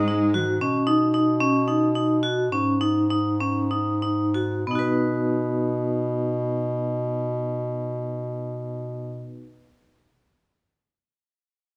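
Hard-mallet vibraphone rings out bright and metallic at the front, spinning arpeggios with a medium motor vibrato over a clear, roomy bass clarinet that holds the low line in a classical style. This hopeful, playful piece of contemporary chamber music is in 7/8 and B major, moving at 176-229 BPM in eighths and slowing down from 0.6 to 4.7 seconds. A rich, focused bowed cello with vibrato sounds only in the first 0.6 seconds, all set in light reverb and small-room ambience.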